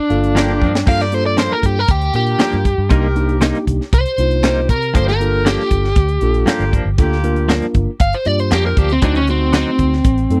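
A crunchy, tremolo-tinged overdriven guitar solo opens this brooding straight-eighth soul blues in G minor at 118 BPM over a mellow tine electric piano fill, as a tight funk drum kit with bright cymbals and a high-tuned snare adds a fill at 0.6 seconds and settles in with a round, tube-saturated muted bass up front, while twangy clean guitar stabs with tremolo and a distant, roomy horn section holding soft sustained chords fill out a dry, close 1970s-style studio sound that moves from Gm7 to Cm7, returns to Gm7, and lands on D7b9 at 9.0 seconds.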